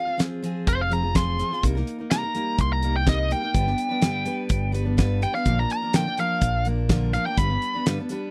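A biting, bright lead guitar with overdrive carries a solo in the high register from the very start, reflective and wistful over a brief folk rock and heartland rock passage at 125 BPM in C minor, moving through Fm, Cm7, G and Bb. Beneath it, a full-bodied picked jumbo steel-string acoustic guitar sits up front, while a damped 70s drum kit with a fat snare, tight kick and hi-hat enters at 0.2 seconds and a round, amped fingered electric bass joins at 0.7 seconds. The sound is dry and close, with little reverb, in the manner of a 1970s studio recording.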